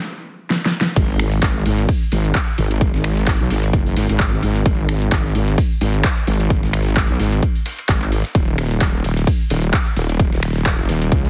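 Bouncy and swaggering, this bass house excerpt opens with a brief stop and a drum fill from the overdriven big-room kit, with its huge snare, metallic hats, handclaps and finger snaps, before the drop lands at 1.0 seconds. There a punchy, overdriven electronic kick sits up front beside a heavy, saturated wobble bass that blends detuned sawtooth and mellow sine tones under chorus and sidechain pumping. A gritty, fat-snared sampler-style kit with filtered cymbals and hats sits in the background, all wrapped in a digital ambience and a heavily compressed, radio-like sound.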